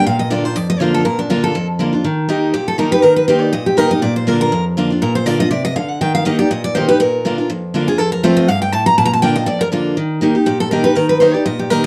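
Bluegrass with a driving, rustic feel at a quick 242 BPM in 4/4, its eighth notes lightly swung, in a short excerpt cut from a longer piece. Two picked steel-string acoustic guitars sit up front throughout: a full-bodied dreadnought carries the melody in its upper range, with audible finger squeak, while a bright auditorium-sized guitar plays the accompaniment below it. The chords move among Bb, Eb and F, and the dark production has a moderate studio reverb.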